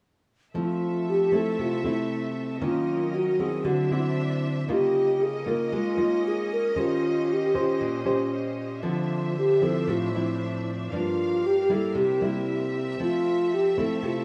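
Romantic and sunny, this bossa nova excerpt in F major moves at 116 BPM in a straight 4/4, with a dark, full-bodied, thumb-plucked nylon-string guitar up front playing accompaniment through chords such as Fmaj7, Db69, Dm9 and C7, a warm studio string section holding soft-attack, sul tasto chords with vibrato beneath it, and a pure, hollow alto flute entering at 0.6 s to carry the crisp-attacked melody, while the recording sits in a small room ambience with moderate plate reverb.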